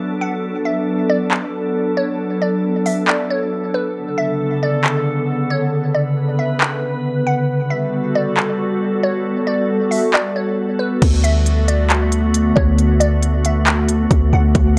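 A dry, gritty recording with transformer saturation and a digital ambience frames this floating, dreamy cloud-rap excerpt in D major at 136 BPM, felt in half-time. An ethereal FM pad holds mellow, sustained chords moving from D6 through Bm9 and Gmaj9, pumping against the sidechain under ensemble chorus and its own reverb, while a crystalline, nasal wavetable pluck carries a detuned melody through chorus, low-pass filtering and tape echo, and a trap kit of hard-clipped kick, crisp hats, handclaps and crash arrives at 1.3 seconds. At 11.0 seconds a deep, boomy 808-style bass on D2 drops in up front as the chords return to D6.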